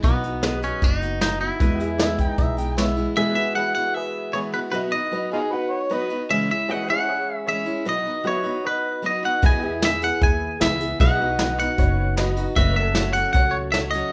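Honky-tonk and classic country in E major at 153 BPM, this heartfelt, down-home excerpt sets a twangy, up-front electric guitar melody over picked, bright steel-string acoustic guitar, background pedal steel chords with volume swells, a gritty overdriven harmonica line with tongue slaps from 2.0 to 6.2 s, a jangly detuned upright piano entering at 3.2 s, and a woody pizzicato upright bass and a brush kit with a punchy kick that drop out near 3.0 s and return at 9.4 s, all in a moderate large studio reverb.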